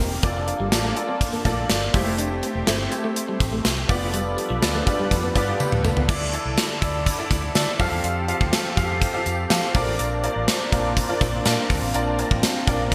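1980s-style pop at 123 BPM in 4/4, nostalgic and uplifting, this short excerpt is anchored by an up-front concert grand piano accompaniment with audible action noise, deep bass and long sustain, dressed in ensemble chorus and shimmer reverb, over a swirling, detuned sawtooth pad with phaser in the background and a round, foam-muted fingered electric bass. A gated 80s drum kit with bright cymbals and a tight kick enters at 0.2 s alongside a very quiet, jingly tambourine, while a slightly broken-up electric guitar riff with subtle chorus and digital delay sits behind until 6.0 s, as a drum fill at 5.6 s leads into the next section. The chords move from Bbmaj7/F through Am7 and G7/F to Dsus2, Fadd9 and Bbadd9, and the polished, bright digital production is soaked in a lush hall reverb.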